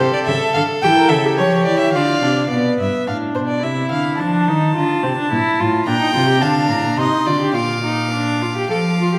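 Serious and solemn, this excerpt from a baroque-style fugue for string quartet moves at 107 BPM in 3/4 and settles into Bb major at 5.9 s; a rich first violin with light vibrato carries the melody over a close, reedy second violin that drops out at 2.5 s and returns at 5.9 s, while an up-front viola adds warm accompaniment and a dark, smooth-topped cello holds the bass, all four bowed by single players with gut-string period tone inside the lingering reverb of a recital hall.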